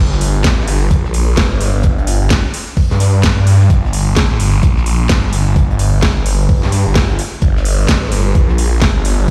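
A thick, swirling detuned saw bass sits up front in this gritty, swaggering bass house cut, its sustained sawtooth tone saturated with overdrive and colored by phaser while sidechain pumping ducks it against the beat. An up-front electronic kick knocks underneath from 0.4 seconds, tape-warm and touched by small room reverb. A garage drum kit adds cracking snare and metallic hats with a swung feel, also sitting in a small room. Far beneath, a very quiet soft brush kit contributes a dark, smooth snare and hi-hat with a rolled-off top. The whole piece sounds as if played on a big sound system in a bare stone room, and this short section is cut from a longer track.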